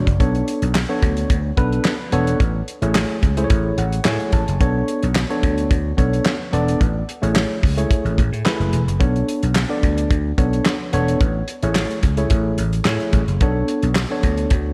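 Early-eighties boogie funk with a slick, funky mood, built on a growly, punchy slap bass and a damped drum kit with a fat snare and tight kick, while a worn, slightly out-of-tune tine electric piano with slapback echo accompanies over Bm9 and Amaj7 and plays a fill at 3.5 seconds, a hollow group handclap sits in the background, and a lush hall reverb lends a big arena sound to this section cut from a longer piece.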